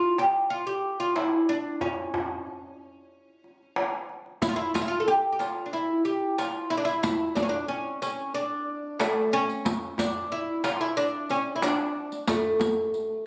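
Captured on a phone in the room and given a light reverb, this short passage is cut from a longer piece. It is an Arabic maqam ensemble piece in A maqam hijaz, moving at a stately 92 BPM in a straight 4/4, with a warm mood throughout. The oud carries the melody from the very start, sitting up front with a woody, plectrum-plucked tone from its fretless neck and doubled strings as it ranges from A3 to A4. The darbuka enters at 0.2 seconds, its metal shell giving a crisp yet large, deep sound that feels distant, as if set back in a big room. At 4.4 seconds the riq joins, its bright jingles heard close and dry.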